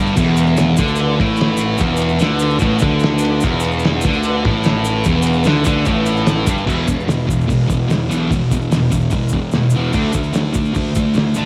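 Raw and rowdy, this garage rock excerpt charges along at 147 BPM in a straight 4/4, with a thick, double-tracked fuzz guitar riff sitting up front over punchy, overdriven picked bass, both running from the start to 11.5 seconds. A muffled, cloth-damped drum kit with a fat snare, tight kick, dark cymbals and a lo-fi, gritty, small-room sound thuds along beside a grainy tube shaker, and the chords move from E7sus4 to E5 at 6.7 seconds, then to D5 at 9.9 seconds. Light reverb and the home cassette recording complete the raw sound.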